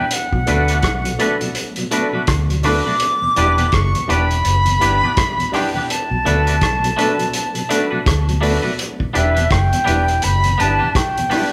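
Roots reggae in B minor at 83 BPM with a swung 16th-note feel, this hypnotic, laid-back excerpt alternates between Bm7 and Em7 while an airy, reedy concert flute carries the melody from the start. Underneath, a mellow tonewheel organ with chorus vibrato, slow rotary speaker and tape echo joins a clean, twangy electric guitar, and a muffled, lo-fi vintage drum kit enters at 0.1 seconds with hi-hat, tight kick and rim click. A dark, foam-muted fingered bass comes in at 0.3 seconds, and a concert grand piano with deep bass adds stabs from 0.5 seconds, with the band heard playing live together in a large, wet studio reverb.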